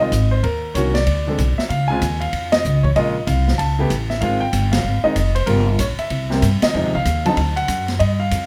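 A clear, intimate concert grand piano carries the melody over a woody, up-front pizzicato upright bass from the very start of this cool, swinging jazz piano trio excerpt, cut from a longer piece at a brisk 190 BPM with a swung eighth-note feel. An open drum kit in a natural studio room joins on hi-hat, ride, snare and kick, with dark cymbals, a high-tuned snare and a boomy kick, while the whole band hits accents at 2.5, 4.7 and 6.6 seconds. The piano's action noise and deep bass come through the close, detailed sound under light reverb as the harmony moves through chords like Ebm7, Bbm7, Gm7b5 and Fm7.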